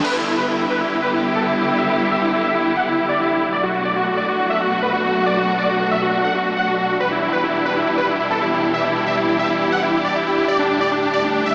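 A straight 4/4 pulse at 138 BPM drives this soaring E minor trance fragment. Bright, detuned supersaw chords carry the melody up front through a filter sweep and tape echo, while a warm, bowed string section with vibrato and portamento holds lush sustained chords alongside. The whole dreamy, small-speaker mix is soaked in a huge 7.1-second ambient reverb as the harmony moves through Em7, Bm7 and Dsus4 across 11.5 seconds.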